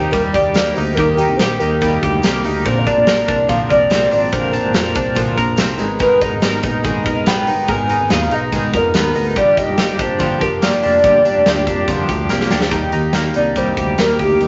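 A wet studio reverb gives this youthful, breezy jangly indie pop fragment a soft glow, its top end rolling off above 7.7 kHz. At 143 BPM in a straight 4/4 and Eb major, a hollow, woody synth lead with a clarinet-like voice carries the melody between G4 and Ab5, warbling with chorus and vibrato over a soft, sustained attack. Beneath it, a picked twelve-string acoustic guitar adds a shimmering, octave-doubled accompaniment, while a twangy, compressed twelve-string electric guitar spins clean arpeggios through tremolo. A round, dark picked electric bass anchors the low end as a big rock drum kit, with a punchy kick and medium-tuned snare in a bright stone room, comes in at 0.1 seconds, joined by a very quiet, jingly tambourine that stops at 12.6 seconds. The chords move from Eb through Bbadd9, Abmadd9 and Gm7, and a drum fill at 12.3 seconds leads back to Eb as a new section begins at 12.7 seconds before the cut.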